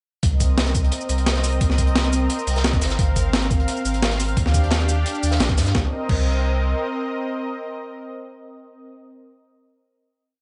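Melancholic and rolling, this short liquid drum and bass piece in C minor moves at 174 BPM in a straight 4/4, opening straight into a drop that runs to 5.7 seconds. A thumpy, gritty electronic kick and a tape-warm breakbeat sampler kit drive a rolling two-step groove of shaker, closed and open hats, medium-tuned snare and crash. Beneath them sits a crunchy, saturated acoustic break, looped with edits and kept in the background with a rolled-off top and high-pass filtering on its hats, snare and room. A deep, full sub bass with an octave carries a dub-style line up front through 6.7 seconds, under the chords Cm7, Ab69 and Ebmaj9. A lush, detuned sawtooth pad with chorus and sidechain pumping holds sustained, warbling vintage chords from the start, and its final Cm7 rings on after the drums stop, closing the piece alone at 8.9 seconds.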